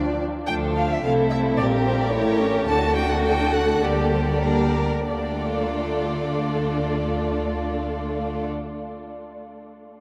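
The sound is steeped in a vast, echoing space, its long cathedral reverberation washing around a small string orchestra in a short, restless passage cut from a quick classical-period movement in 2/4. From start to finish, two violin sections carry the music: one sings the expressive, close-sounding melody, while the other plays a focused second line with a smooth top that sits up front. Violas fill in the accompaniment with rich, vibrato-laden bowing, and the cellos hold a smooth, even bass line in the background above the double basses, whose own bass sounds close and expressive. The harmony moves urgently through D minor, A minor, G minor and a tense A7b9 before landing on a D major chord, with the pulse slowing between 2.1 and 5.1 seconds. A contrasting second section begins at 5.1 seconds, returning to D minor as the echoing hall keeps the mood anxious and pressing.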